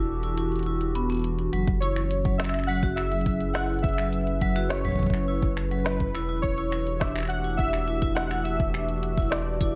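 Warbling, nostalgic lo-fi synth keys carry the melody from 1.8 s, their detuned, mellow tone softened by chorus and tape echo. This melancholic, intricate IDM excerpt moves at 104 BPM in a straight 4/4 in F# phrygian. Beneath it, a dark, tape-like pad sustains chords with chorus and its own reverb, while a bright, metallic vibraphone played with medium hard mallets ripples through arpeggios under a low-pass filter sweep and digital delay. A round, sine-like sub bass sits up front. An organic electronic kit adds finger snaps, smooth hats and a woody snare, and a deep, tape-warm electronic kick enters at 1.7 s. The harmony moves from Em11 to F#m11 and back to Em11 under light reverb, giving the fragment of a longer piece an intimate, small-room character.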